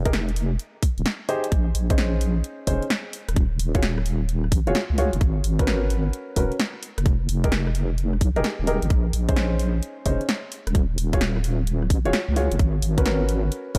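A deep, wobbling bass sits up front in this late-night, bouncy two-step UK garage piece, its square and sine tones detuned, saturated and compressed, thickened with chorus and shaped with a fast attack and a sustained body. A baby grand piano plays stabs from 0.1 seconds, its intimate, natural tone carrying audible action noise, a short sustain and a tape echo. An electronic kick drum, layered, tight and overdriven, drives the groove from the front of the mix, while a punchy analog drum machine adds hi-hat, rim click and snare, also overdriven. Swung in 4/4, the parts move over a chord cycle that runs from Fm9 through Bbm11, Ebm7 and Abm11, then returns with Fm7. The production is dark and dry, with little reverb, and the passage is cut from a longer piece.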